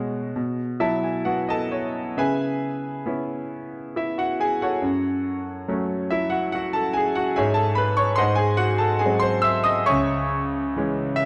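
Loose, rubato 3/4 at 70 BPM gives this reflective, dark classical fragment in C# minor a hesitant sway, as a lone concert grand, brilliant yet worn with deep bass and an up-front presence, spans C#2 to E6, opens with a fill from 0.4 to 2.2 seconds, and then moves through C#m7, F#m and G#7 before settling on C#m at 9.9 seconds, all within a moderate concert-hall reverb and a dusky, mellow production.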